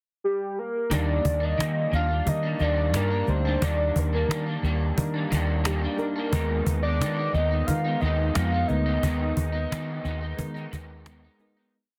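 A relaxed, dry cajon backbeat with snares and a round, foam-muted fingered bass line full of slides and chromatic approach notes anchor this hazy, laid-back indie and bedroom pop piece, where a slightly broken-up electric guitar through a small old amp strums sixteenths in jazz chord shapes, soft electric-piano-like synth keys push mellow drop2 chords through a cassette-tape haze, and a warbling, nostalgic lead with vibrato sings song-like motifs from 0.2 seconds, carrying on into a fade-out that begins at 9.0 seconds.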